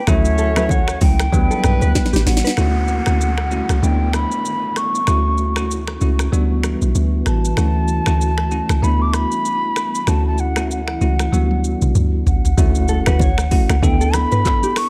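A flute with an airy, hollow tone and a crisp chiff carries the melody from the very start, trailed by a delay, as a mellow horn section, bell-like tine electric piano, deep log drum bass and a produced afro-pop kit come in alongside it. This romantic, joyful afrobeats passage, cut from a longer piece, swings its sixteenths, while congas and bongos and a dark, fingered electric guitar riff sit quietly beneath the opening bars before the horns drop out at 2.2 seconds. After a drum fill, a downlifter sweeps through in the background, and a moody sawtooth pad with chorus and its own reverb spreads sustained chords under the middle stretch. The round, percussive log drum bass and the kit's deep kick, sharp snare and metallic hats stay up front, with finger snaps, handclaps, rim clicks, shaker and toms filling out the groove. At 12.6 seconds an impact lands as the hand drums and guitar riff return, over a dark production with light digital ambience.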